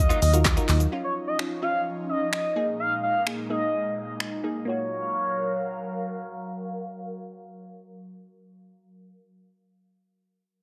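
Dance-pop with a summery, carefree mood and a straight pulse, this short excerpt begins with a punchy, funky analog bass pluck that plays only until 0.9 seconds. A deep house drum kit with a deep kick and woody snare, layered with finger snaps, handclaps, hi-hat and shaker, sits up front before dropping out at 4.3 seconds. Over it, a smooth, vintage-sounding lead with vibrato and portamento sings the melody with chorus, delay and sidechain pumping, falling silent at 6.0 seconds. A crystalline wavetable pluck carries the accompaniment while a soft, breathy pad with phaser and chorus holds sustained chords, both pumping with the sidechain. A very quiet, clean, direct-recorded electric guitar adds a brief riff near the start, and a filter sweep runs through the harmony as the chords move from D#madd9 through C#add9 and A#7sus4 to F#maj7, all inside light digital reverb.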